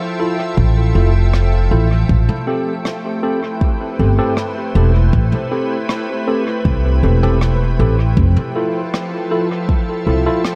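A straight 79 BPM pulse in 4/4 carries this spacious, hazy ambient dub fragment in A minor, where a deep, layered electronic kick and a woody, pizzicato upright bass, the bass sitting up front, anchor a calm, warbling organ-like pad of detuned chorused chords, worn and lightly overdriven tine electric piano stabs trailing dub echo through a low-pass filter, and a dark brushed kit with rim clicks and toms murmuring in the background, all moving between Fmaj7 and Am7 in a dark, small-room production.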